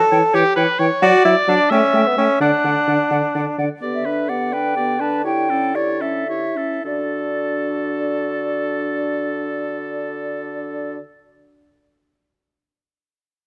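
In a straight 6/8 lilt at 69-89 BPM counted in dotted quarters, this quick classical-period movement for wind quintet moves in D major with a lively, spirited mood. The concert flute carries the melody with a pure, straight tone and crisp attack. A clear oboe sings the second line with a soft attack, while the clarinet and a mellow, distant, roomy French horn fill in the accompaniment, the clarinet sitting in the background. Underneath, a warm bassoon anchors the bass up front; oboe, horn and bassoon share a light vibrato. The harmony moves from C#dim/E through A and D to G/D and A7/D, and the tempo slows between 3.1 and 6.8 seconds before settling on a D chord. Close, detailed microphones and light reverb give an intimate sound to this passage, cut from a longer piece.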